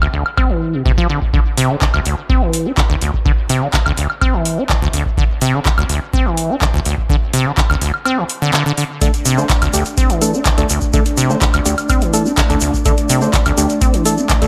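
A squelchy, resonant sawtooth acid bass sits up front, carrying a riff between D2 and D4 with tube saturation, analog chorus, tape echo and sidechain pumping that give this gritty, driving acid house excerpt its snarl. Beneath it, a booming analog drum machine supplies handclaps, metallic hi-hats and woodblock with a tape-warm tone, while a deep electronic kick anchors the straight 4/4 groove. The kick drops out at 8.1 seconds, leaving the bass and drum machine on their own until 9.0 seconds. From 9.0 seconds, a smooth, warbling vintage pad adds sustained chords with subtle chorus and its own sidechain pumping. A hollow, dark organ-like stab with chorus and tape echo also enters then, alongside a grainy, mellow tube shaker that stays close, dry and in the background. Light reverb frames the mix, and the passage is cut from a longer piece.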